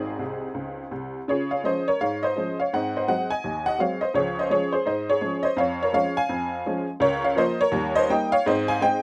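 A honky-tonk upright piano opens this short stride-jazz cut alone, tossing off a quick fill from 0.2 to 1.3 seconds before settling into the main passage. The tempo is a brisk 167 BPM in 4/4, with a 62% swing on the eighth notes that gives the playing a swinging, playful bounce in D-flat major. The detuned, jangly tone of the instrument has a vintage character, and its bright sound sits present and up front, spanning from low Ab1 up to Ab5. The harmony moves through Db, Db/F, Bbm/Db and Eb7 before landing on Ab at 8.5 seconds, and the clip ends at 9.0 seconds. A light reverb adds a touch of room around the piano.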